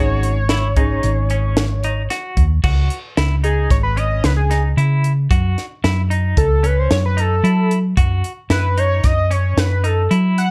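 A bold, retro octave-doubled lead with chorus and vibrato opens this brooding, driving progressive instrumental, joined at once by a brilliant baby grand piano that drops out at 1.5 seconds and a clean, picked semi-hollow electric guitar playing arpeggios through tremolo. The band moves in 5/4 at 112 BPM with a straight feel, the crisp fusion drum kit entering at 0.2 seconds with its high-tuned snare, tight kick, hi-hat and crash cymbal sitting up front. Underneath, a round, punchy hollow-body short-scale bass, fingered and amped, carries the low end and is the loudest part of the mix. At 2.6 seconds the music moves into a new section where the sawtooth-and-sine, wave-folded lead takes a sustained analog synth solo with a fast attack. The harmony shifts from G#sus4 to F#m7 and then F#m6, all set in light reverb within a dark production, cut from a longer piece.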